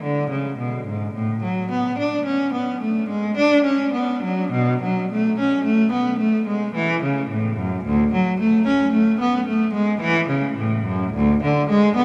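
Bathed in a long, wet cathedral reverb, this 12-second fragment of a radiant, dance-like baroque-style suite movement features a single bowed cello, up front and alone throughout, singing from D2 to D4 with a rich, focused tone, a smooth top and expressive vibrato, moving in a rubato 3/4 at around 54 BPM.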